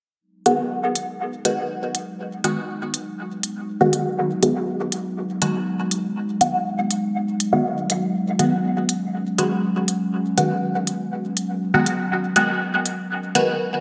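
Dub techno at 121 BPM in G# minor, hazy and deep, built on a single G#m7 chord, with a warbling, lo-fi tape-like pad holding sustained chords under chorus while a muted, nasal dub chord stab sits up front, carrying phaser and dub echo as a filter sweep runs across it. Smooth, layered electronic hi-hats keep time from 0.5 seconds, and the whole is set in a lush digital hall reverb with a bright 1980s-style production sheen in this short excerpt cut from a longer piece.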